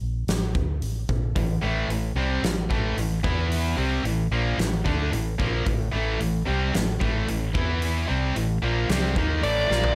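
Driving and heavy, this hard rock excerpt moves at 112 BPM in a straight 4/4, cut from a longer piece. A dark, round, foam-muted electric bass opens alone, with a huge arena drum kit arriving at 0.3 seconds, its fat snare and punchy kick sitting up front in a big, natural room. At 1.4 seconds two distorted guitars take up the riff together: one sludgy and overdriven, the other tight, bright and up front. The harmony rests on A minor, with brief turns to an E power chord before settling back. Near the close, at 9.4 seconds, a nasal lead guitar with a parked wah cuts through on a single high note, just ahead of a drum fill at 9.7 seconds. A light reverb gives the mix a touch of space.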